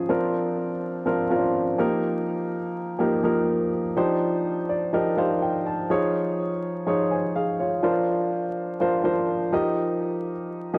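A straight, even pulse in 4/4 carries this short pop piece, cut from a longer work, with a glossy, uplifting mood. A single warm grand piano plays alone throughout, sitting up front and spanning F3 to A5, its tone colored by a cassette tape effect and an analog delay. The harmony circles over a constant F in the bass: Bbadd9/F, Eb/F, Cmadd9/F and Dbadd9/F, then back to Bbadd9/F and Eb/F. A brief piano fill between 4.5 and 5.9 seconds leads into the Dbadd9/F chord. The sound has the intimate feel of a home recording on cassette, with light reverb, a small room ambience and a layer of vinyl crackle.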